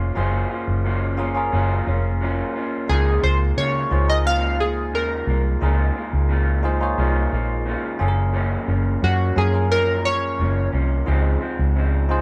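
Nostalgic and laid-back, this fragment of straight-feel indie bedroom pop moves through major-seventh and sixth chords, with a bell-like tine electric piano and a dark, slightly broken-up lo-fi guitar through a small old amp, its pitch drifting with a warbly wobble. A round, foam-muted fingered bass sits up front beneath them. From 2.9 to 10.7 seconds, glossy, chorused retro synth keys with pulse-width modulation and a filter sweep carry the melody, all in a light-reverb room where the band plays live together.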